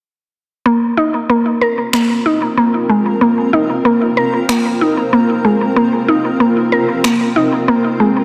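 Hypnotic and earthy, this organic downtempo excerpt opens with a woody, round mallet-like synth pluck spinning chorused, delayed arpeggios up front from 0.7 seconds, joined by a cloudy, evolving granular pad holding sustained chords and by electronic finger snaps with a soft-clipped snare, all set in a moderate scoring-stage reverb within a dense, heavily limited modern master.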